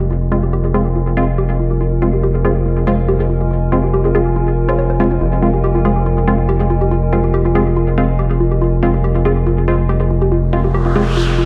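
A thick, growling FM bass sits up front in this dark, hypnotic techno excerpt, beneath a woody wave-folded pluck riff with analog chorus and tape echo, crisp wavetable chord stabs with a cassette-tape tint, and a warbly, nostalgic lo-fi pad, all set in an echo-heavy mix with moderate chamber reverb until an electronic noise sweep arrives at 10.6 seconds.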